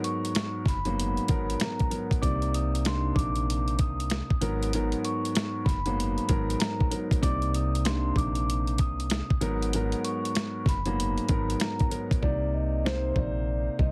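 Boom-bap hip-hop with a tough, moody swing, this excerpt from a longer piece opens on a gritty, sampler-style drum kit with a thumpy kick and medium-tuned snare up front, a vintage-sounding grand piano filtered through cassette tape comping Abm9 and Cm9 chords, and a vibraphone played with soft mallets carrying the ringing, metallic melody over a slow motor vibrato. A punchy, round FM bass enters at 0.7 seconds. The mix is dry with a heavily compressed radio sound, and the hi-hats drop out at 12.2 seconds as a brief new section begins.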